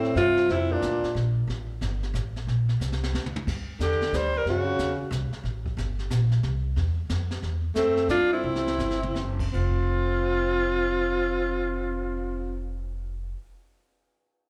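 Small-group swing and bop jazz in F major, this playful, swinging excerpt moves in 3/4 at 154-182 BPM with a firm swing on the eighths, cut from a longer piece and heard as a live gig through the venue's PA with club reverb and a small, lightly reverberant room. An alto saxophone, up front with vibrato, carries the melody in short phrases at 0.0, 3.8 and 7.8 seconds, while a breathy, whispered tenor saxophone with scooped notes, a soft attack and a touch of slapback echo shadows it on a second line in the same spots. Underneath, a woody, thumpy upright bass played pizzicato on gut strings sits close to the listener and runs the whole way through. A brush kit with dark cymbals, a high-tuned snare and a boomy kick, its top rolled off and given slapback echo, sits further back, adding fills around 2.8 and 8.4 seconds before dropping out near 11.8 seconds. The harmony drifts through colourful chords such as Gsus2, Fmaj9 and Esus2/F#, and the tempo slows in the passage from 7.4 to 9.5 seconds before settling on F5.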